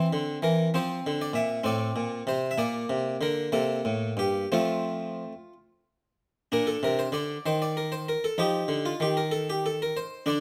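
Swaying in 6/8 at 60-66 dotted-quarter beats per minute with a free, rubato feel, this radiant, flowing baroque-style suite movement in F major is cut from a longer piece and is carried by a solo harpsichord. The single-strung Flemish-style instrument sounds airy, round and plucked, sitting up front under close, detailed microphones within a moderate stone-room reverb. Its range reaches from G2 to E5 as the harmony moves through colours such as Amadd11 and Bbadd9 before settling on F13/D at 8.4 seconds.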